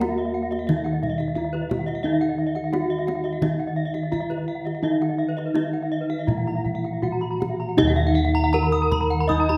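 In a straight 4/4 pulse at 79-88 BPM, this shimmering, brilliant Balinese gamelan excerpt in Eb pelog sets a bright, horn-malleted bronze metallophone melody over a wooden-malleted metallophone accompaniment in the background, two bright, paired-tuned metallophones spinning high arpeggios (one with tape echo), round, mellow bossed gongs carrying the bass, and a tight, dry kendang played with soft hands, all bathed in a wet recital-hall reverb within a dark, warm production before a new section arrives at 7.8 seconds.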